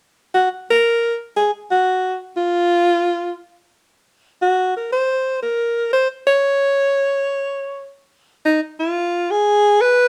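Jazz in Db major at 118 BPM, this short excerpt cut from a longer piece swings in 4/4 with a warm, swinging mood. A clear alto saxophone plays alone from 0.3 to 10.1 seconds, its line moving between Eb4 and Db5. Close-miked and up front, the horn carries vibrato and a jazz-style phrasing that gives the melody its lilt. The eighth notes lean into a swing feel, keeping the pulse buoyant. Light reverb gives the solo horn a touch of space, and the phrase shifts into a new section at 8.4 seconds before the clip ends.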